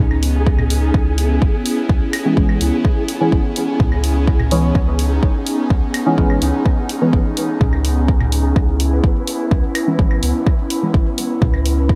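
Nocturnal and meditative, this dub techno excerpt in C# minor moves at 126 BPM over a single C#m7 chord, anchored by an up-front deep kick and a clean pure sine sub bass, with dark electronic hi-hats and background claves and toms treated with dub echo. An airy, breathy pad with chorus sustains throughout, while a flickering, grainy granular texture sits in the background and a soft, detuned, wave-folded chord stab with phaser and dub echo enters at 2.3 seconds. Sidechain pumping breathes through the pad, bass, texture, percussion and stabs, all set in a light reverb.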